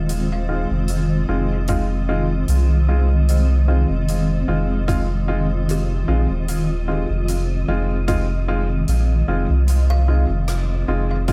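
A slow 75 BPM groove in 4/4 with a light 16th-note swing opens this spacious, hazy ambient dub excerpt in F minor, resting on a single Fm7 chord: a soft-mallet kit's hi-hat and rim click sound natural and hall-like, and a tight electronic kick joins at 1.7 s. Underneath, a deep, round sub bass with tube saturation sits up front, while a cloudy, evolving granular pad drifts in detuned unison through its own reverb, and an airy, breathy wind texture hovers in the background. Woody upright piano stabs arrive at 0.5 s through a low-pass filter and dub echo, and a very quiet kalimba adds hollow, plucked arpeggios.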